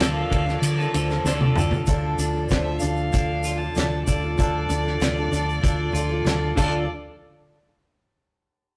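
A rough rehearsal-room recording with tube saturation and a moderate stone-room reverb frames this wistful, reflective folk rock and heartland rock excerpt at 96 BPM in D minor, resting on a single Dm chord. A distant, woody fiddle with light vibrato carries the melody over a shimmering, octave-doubled picked twelve-string acoustic guitar, a twangy, compressed twelve-string electric guitar riff, a soft, flute-like tonewheel organ with key click and slow rotary speaker, a very quiet clear grand piano, and a grainy egg shaker in the background. Up front sit a round, dark hollow-body short-scale bass and a dry 70s drum kit with fat snare and tight kick, which plays a fill at 1.2 seconds before the piano adds its own fill at 5.9 seconds.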